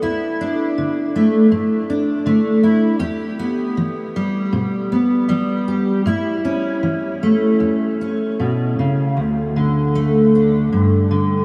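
A fingerpicked steel-string acoustic guitar opens alone at 0.0 seconds, full-bodied and up front, with the warm ring of fresh strings on a dreadnought body. This is peaceful solo folk at 79 BPM in 4/4, played with a loose, rubato feel and tuned slightly low, with A at 438 Hz. The guitar moves through Dsus2, Em and A before shifting at 9.2 seconds into a new passage built on D5 and G5, spanning from D2 up to G4. An analog chorus and a diffuse ambient delay color the guitar, and a huge ambient reverb with a 7.9-second tail soaks the whole mix in a dreamy, wet haze. Cut from a longer piece, the recording ends at 11.4 seconds.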